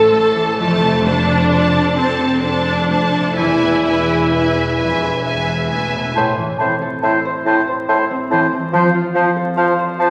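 A lush, up-front viola section carries the accompaniment at the heart of this serene, tender fragment of a slow romantic orchestral movement in 6/8 with a rubato feel. Above it, a distant violin section sings the melody with expressive vibrato while a second, closer violin section traces a supporting line, and smooth cellos and focused double basses hold the bass beneath. A mellow, fingerpicked concert harp rings out arpeggios from the start through to the end at 10.1 seconds. The violas drop out near 4.8 seconds and the other strings fall away around 6 seconds. At 6.2 seconds a small wind group takes over: a clear, up-front oboe and a pure, hollow silver flute play second lines, a roomy clarinet sits in the background, and a soft-attacked bassoon supplies accompaniment. The chords move from A minor through F and E before returning to A minor and F. A wet scoring-stage reverb bathes the ensemble, and a vinyl crackle runs beneath it all.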